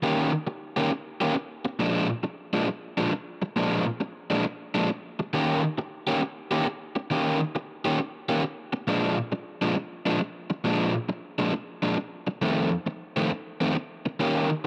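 Swung eighth notes in 4/4 carry this gritty, swaggering blues fragment, cut from a longer piece, where a lone overdriven semi-hollow electric guitar plays up front for the full 14.7 seconds. Its picked, hollow-body tone sits in a moderate spring reverb as it moves through Eb7, Bb7 and F7, ranging from F2 to G4.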